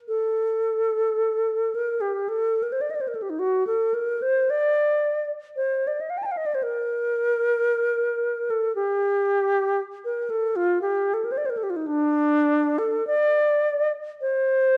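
A lone alto flute, pure and up front with crisp attacks and vibrato, plays a meditative, yearning classical line from 0.1 to 14.8 seconds at a free, rubato 55 BPM in 4/4, its range spanning D4 to A5 and tuned to A4 = 445 Hz, heard in a moderate recital-hall reverb through worn, warbling old cassette tape with pitch drift, in a short cut from a longer piece.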